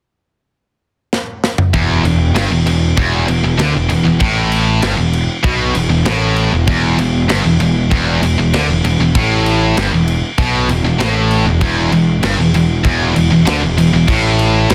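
A swaggering, powerful hard rock excerpt in 4/4 at 97 BPM, cut from a longer piece, with a straight feel. A tight metal drum kit opens with a fill at 1.1 seconds, its medium-tuned snare, tight kick, toms and crash cymbal sounding mid-forward, with a rolled-off top in a studio room. At 1.7 seconds the full band lands on an E5 chord: two high-gain distorted electric guitars play the riff in the low register from E2 to D3, one bright and heavy, the other sitting further in the background. Underneath, a picked electric bass growls up front with fuzz and overdrive, running from E1 to D2 and carrying a bright, direct-and-amped bite. The mix is dense and heavily limited in a modern style, keeping the riff pressing forward until the excerpt ends at 14.7 seconds.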